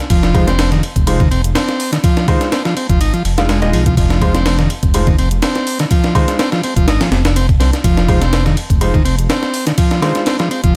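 Gritty and raw, this swung breakbeat excerpt pairs a buzzy, overdriven combo organ riff carrying lo-fi sampler grit and digital delay with a deep, rumbling detuned saw bass, a compressed, pitched-up sampled drum kit with a thumpy kick up front, a layered electronic hi-hat in the background, and warm grand piano stabs echoing through delay from 0.3 to 10.2 seconds over a single Fm7 chord in a light reverb.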